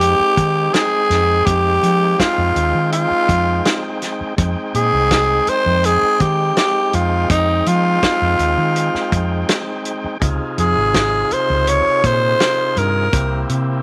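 A straight-eighth groove in 4/4 carries this mournful, soulful slice of soul blues, cut from a longer piece. Up front, the soul drum kit sounds acoustic and dry, with a fat snare, a tight kick, hi-hat and a rolled-off top. Beside it, the vintage fingered electric bass is dark, round and punchy, its foam-muted, amped tone sitting just as close. The tenor saxophone leads the melody with a raspy, breathy growl and scooped notes in a jazz style, clear yet gritty, before it stops at 13.5 seconds. Further back, the overdriven tonewheel organ fills in thick accompaniment with audible key click through a fast rotary speaker, over a harmony that rests on Fm7, moves to Dbmaj7 at 10.2 seconds and reaches C7 at 13.1 seconds, all set in light reverb.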